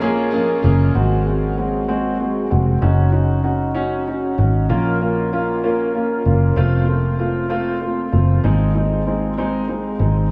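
A six-eight pop ballad with a dramatic, melancholic mood, this excerpt drifts through a dreamy mix soaked in a huge ambient reverb. A concert grand piano carries the accompaniment throughout, its open tone, deep bass and long sustain sitting up front with a lush chorus. A fingered electric bass holds the low end for the whole passage, dark, round and foam-muted, with a direct, amped presence close to the listener. A picked steel-string acoustic guitar plays arpeggios in the background only until 1.0 seconds, its subtle chorus and audible finger squeak heard at a distance, as if across an auditorium. The harmony moves from Bbm7 through Ab7, Ebm7/Gb, Bbm and F before settling on Ab, as the piece is cut from a longer work.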